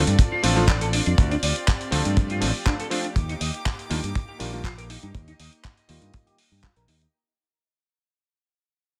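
Sleek and groovy, this short nu-disco cut moves at 121 BPM in 4/4 with a light 16th-note swing, opening on Dm7 and shifting to Ebmaj7 at 3.2 seconds as the whole passage fades out. A dry, tight kick sits up front beside a gritty, compressed sampler-style kit of handclaps and hi-hat, while a fingered electric bass, warm, direct and up front, pumps against the kick, and a clean, picked semi-hollow guitar plays a riff through analog chorus, delay and a filter sweep. A clangy, cutting electric grand piano comps with its own filter sweep, delay and pumping, and a soft-attack chamber string section floats in the background with sustained sul tasto chords, all set in a small room.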